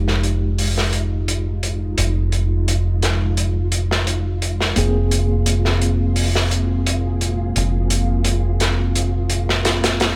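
A deep, round dub bass sits up front on a low F, joined by a saturated, gritty breakbeat kit with a dark, rolled-off top, in this melancholic, hypnotic trip hop piece at 86 BPM in F minor, where a worn, slightly out-of-tune tine electric piano with tremolo and tape echo and a vintage sawtooth string-machine cello pad under a filter sweep hold Fm9 before moving to Abadd9/F at 4.8 seconds, while a flickering, grainy granular texture drifts in at 1.2 seconds behind them.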